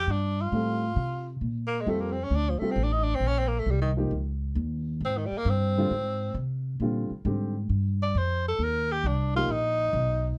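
A clear tenor saxophone leads this playful, sophisticated swing jazz fragment in Bb major at 134 BPM, its present, soft-attacked tone shaded with light vibrato and scooped notes as it takes a solo from 1.4 seconds on. Up front beside it, a woody, thumpy pizzicato upright bass holds the low end, while a warm baby grand piano with short sustain comps from 0.5 to 9.5 seconds through chords such as Bbmaj9, Eb7(no3) and Abmaj7. Light reverb and a dark, warm production frame this cut from a longer piece.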